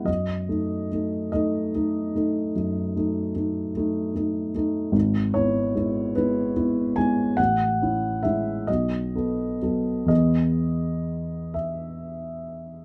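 Dreamy and nostalgic, this short romantic nocturne excerpt for solo upright piano drifts in a rubato 12/8 at roughly 41-51 BPM, its woody, intimate tone sitting up front with audible action noise under close, detailed microphones and light reverb as the harmony moves from D#dim/F# through E/G#, Amaj7 and B7 to settle on E at 10.1 seconds.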